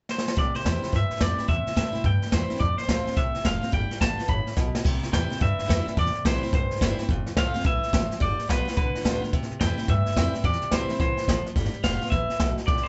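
The recording has a lo-fi character, with light reverb and a band playing live in one room, its top end rolled off so the sound stays vintage. This short, upbeat rockabilly cut from a longer piece swings at 214 BPM in C major, with a retro feel throughout. A brushed jazz kit opens with a fill at 0.1 seconds and sits up front with a boomy kick, a medium-tuned snare and dusky cymbals. The pizzicato upright bass brings a woody, thumpy pulse on gut strings, while the full-bodied dreadnought acoustic guitar picks a crisp chordal backing through C, F and G7. Over this, an electric guitar through a small old amp carries the melody with a twangy, slightly broken-up tone, forward in the mix. A second drum fill at 4.6 seconds leads into a new section that cycles the same changes before closing on G7.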